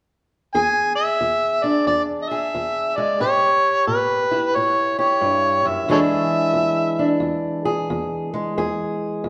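An overdriven, amplified harmonica leads with a gritty, swaggering jazz-style melody full of vibrato, scooped notes and tongue slaps, playing from 0.5 to 7.2 seconds over a laid-back swung groove at 90 BPM in E mixolydian. Underneath, a dark, boxy parlour steel-string acoustic guitar is fingerpicked through E7, A7 and back to E7, carrying on alone until 9.3 seconds. Both parts sit up front in this acoustic country blues duo, with a moderate concert-hall reverb giving the short cut a roomy glow.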